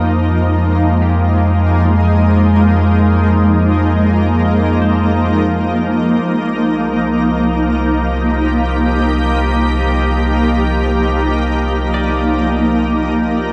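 Ambient music in free time and F minor, melancholic and reflective, drifting through a vast, echoing space as a short section cut from a longer piece. A shimmering, ethereal pad with chorus and an octave-up shimmer holds sustained chords up front under a filter sweep, while a deep, round sub bass sustains beneath it, moving from Fmadd9 to Cm7 at 6.2 seconds. A very quiet, twangy clean electric guitar picks bright arpeggios until 5.8 seconds, then returns briefly at 11.9 seconds.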